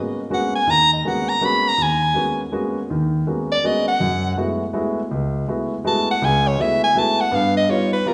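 A wet recital-hall reverb surrounds this short cut from a longer jazz waltz, swung in 3/4, with a cool, searching mood. A concert grand piano accompanies from the start, intimate and natural, with deep bass and audible action noise, over minor-eleventh chords that settle on an augmented seventh near 7.3 seconds. From 0.3 seconds a clear soprano saxophone sits up front and takes the solo, its soft attack, subtone and vibrato giving the melody a gentle, present voice.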